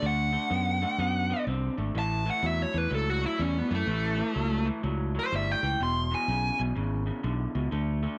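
Light digital reverb surrounds this gritty, swaggering electric blues shuffle in A mixolydian at 125 BPM, cut from a longer piece, where a smooth, overdriven lead guitar solos up front until 6.6 s over a slightly broken-up, lo-fi riff from an electric guitar through a small old amp and a round, dark fingered bass, as the chords move through D6, A6 and E6.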